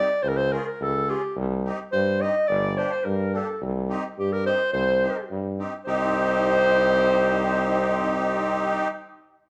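A smooth-topped warm clarinet sings the melody up front over a reedy, shimmering musette accordion from the start of this festive, soulful klezmer excerpt in 2/4, joined at 0.2 seconds by a clear, punchy tuba bass with scooped notes and at 1.9 seconds by a distant second clarinet line in the background, all played live together in a large studio room with moderate reverb.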